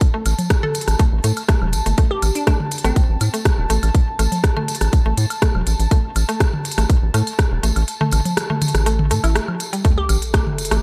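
A rubbery, bouncy square bass pumps up front beneath a tight, tape-warm electronic kick in this quirky, cool minimal techno cut in A minor at 122 BPM, joined by crisp hi-hats and rim clicks from a garage drum kit, a jingly, distant tambourine, delayed analog-style woodblock, congas, toms and claves, a woody mallet-like synth pluck riff with chorus and delay, a warbling, nostalgic lo-fi pad, and brief crystalline phrases from a glassy wavetable pluck starting at 2.1 seconds, before the kick drops out at 7.9 seconds and a background sub drop lands at 9.8 seconds in a digital ambience.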